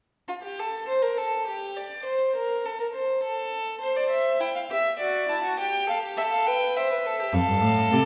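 Lively and stately, this baroque-style fugue for string quartet moves at 102 BPM in 3/4 with a straight feel, and this short passage is cut from a longer piece. A warm-toned violin opens the second line at 0.3 seconds, played by one bowed player with gut strings in period style and a reedy edge, sitting up front. At 3.8 seconds a second violin takes the melody above it, its rich sound carrying light vibrato, while the harmony settles on C and moves through D/F# and G7 before returning to C. A rich-toned cello enters on the bass at 7.3 seconds, sounding slightly louder than the violins as the chords turn to F. The players are heard from further back in a recital hall whose lush reverb gives the gut-string sound a resonant, airy bloom.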